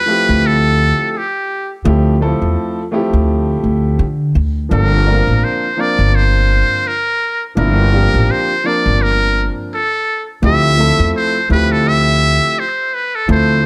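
A buzzy, breathy trumpet with a metal mute opens this nocturnal, cool jazz-hop excerpt at 84 BPM, carrying a soloist's melody with light vibrato and a slapback echo over a 16th-note swing in G dorian. A concert grand piano enters at 0.1 seconds with open, long-sustained accompaniment, and a woody, thumpy pizzicato upright bass on gut strings follows at 0.3 seconds, sitting up front. The harmony moves from Dm11 to Gm11 and back to Dm11 in a dry room.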